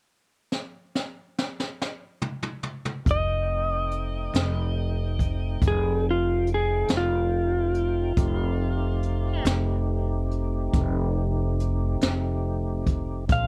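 In a straight 12/8 at 47 BPM, this swaggering, rollicking slow blues in F mixolydian opens with a roomy brushed drum fill at 0.5 seconds, its high-tuned snare and boomy kick softened by a rolled-off top. A fat, lightly overdriven tonewheel organ then arrives on an F9 at 3.0 seconds, holding sustained chords through a slow rotary speaker and chorus vibrato lower in the mix. At 3.1 seconds it is joined by a woody, bright pizzicato upright bass and a warm, slightly broken-up, compressed slide guitar carrying the melody, with little reverb giving the recording a dry, close sound.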